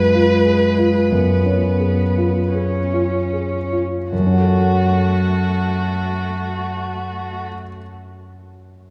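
A classical piano trio in a slow romantic movement, this melancholic, yearning excerpt sits in F# minor at 36-48 BPM in 4/4, played with rubato and slowing down through its first 4.1 seconds as the harmony moves from C#7/F# to F#m. An expressive, up-front violin carries the melody with vibrato, portamento and a soft attack, while a rich, distant cello sings a smooth, even second line and an intimate, up-front grand piano, vintage in tone with deep bass and audible action noise, supplies the accompaniment. The violin and cello stop at 7.5 seconds, leaving the piano alone until 8.9 seconds inside a lingering church reverb.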